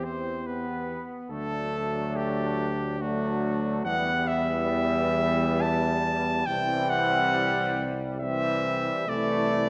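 Set in a wet scoring-stage reverb with a 1.5-second tail, this short cut from a longer classical piece for brass band unfolds as a lyrical, tender hymn at 70 BPM in 3/4, played with rubato. A mellow cornet carries the melody up front with a smooth top. A close-miked flugelhorn with light vibrato sings a second line in the background, while a bright, tight trombone section and a soft-attacked solo trombone with vibrato fill out the accompaniment, and a distant, roomy tuba with a warm tone anchors the bass. The harmony moves from C/E through D, Em and C before reaching Am/C at 9.1 seconds.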